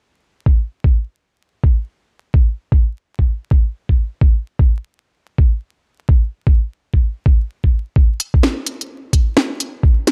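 Wistful and ghostly, this short cut from a longer future garage piece moves at 128 BPM in 4/4, with a 62% swing on the sixteenths giving it a loping, uneasy gait. From 0.5 seconds a sampler-style electronic kick drum carries the track alone, pitched down, compressed and muffled into a thumpy pulse that sits up front. The music shifts at 8.0 seconds, and at 8.2 seconds an organic electronic drum kit joins with a woody snare and smooth hi-hats, its overdrive adding bite as it too sits forward in the mix. The recording has a dry, gritty hardware character, dusted with vinyl crackle and set in a digital ambience that deepens the haunted atmosphere.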